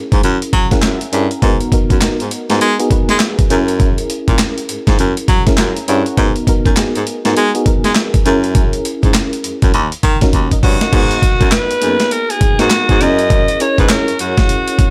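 A swung sixteenth-note groove at 101 BPM in 4/4 drives this confident, bouncy new jack swing cut from a longer R&B piece, set in G# minor and tuned slightly below standard pitch. The breakbeat sampler-style kit sits up front, compressed and overdriven, with a thumpy kick, a medium-tuned snare, handclaps, hi-hat and crash cymbal carrying a gritty small-room character. Underneath, a clear baritone saxophone plays the bass line with jazz-style vibrato, while a dark, full-bodied FM electric piano with tremolo and a noise layer comps through chords that move between F#7, G#m7 and D#m7, adding short fills early on. A drum fill at 10.3 seconds leads into the second section, and just before it arrives a raspy, bright alto saxophone enters at 10.6 seconds with a punchy pop-style melody full of scooped notes and light vibrato. The mix is dry, with little reverb.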